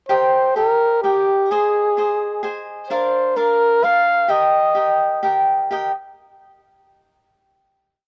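Festive and proud, this brief mariachi piece in Eb major moves at 128 BPM in a straight 3/4, with a mellow trumpet up front singing a motif-based, song-like melody in classical style with vibrato from 0.1 to 5.2 seconds. A crisp, picked acoustic cavaquinho, also up front, strums open chord shapes in a folk manner alongside it, moving through Eb, Ab and Bb before returning to Eb and ringing on to a final chord at 5.7 seconds. The sound is dry and close, like a 1970s studio recording with little reverb.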